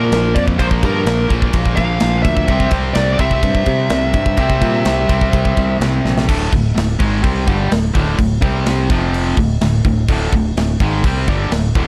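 Heavy metal in D minor at 126 BPM, this dark, relentless passage is cut from a longer piece and moves in a straight 4/4. A dark, high-gain lead guitar carries the melody from the start, its distorted, picked line coloured by digital delay before it drops out at 5.8 seconds. Underneath, a double-tracked, overdriven rhythm guitar churns out a bright, picked riff up front, while a growly fingered electric bass sits bright and direct in the low register. The tight metal drum kit drives with crash and ride cymbals, a medium-tuned snare and a tight kick, heard in an airy big room with polished, gleaming cymbals, and a drum fill at 6.0 seconds leads into a new section at 6.3 seconds. Light reverb and a dusky, warm overall production keep the sound heavy yet controlled as the chords move through D5, C5 and F5.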